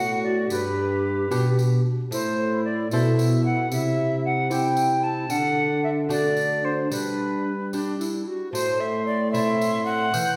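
This courtly yet rustic Renaissance-style consort dance opens with silver concert flute, tenor recorder, lute and trombone sounding together in a straight 6/8 at 75 dotted-quarter beats per minute in A dorian, with a jingly tambourine joining at 0.5 seconds. The flute carries the melody up front with an airy, straight tone and crisp attack, while the mellow tenor recorder weaves an expressive second line marked by vibrato and a breathy chiff. Underneath, the lute supplies a delicate fingerpicked accompaniment whose bright nylon double strings, some doubled at the octave, add shimmer. A warm, roomy trombone anchors the bass, and the close, dry tambourine sits lightly beneath the ensemble. The harmony moves through G, Am, C, D and back to G before turning to Am as the phrase begins again. A wet recital-hall reverb places the listener further back in the room, and the recording is cut from a longer piece.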